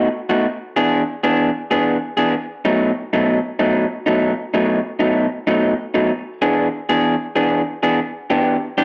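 Blues with a laid-back, gritty swing, played by a lone electric guitar through a small old amp, its fingered tone slightly broken-up, compressed and lo-fi, sitting up front with a slapback echo. Moderate spring reverb surrounds it as the harmony moves from E7 to B7, back to E7 and onto Em7 at 8.0 seconds, in a short passage cut from a longer piece.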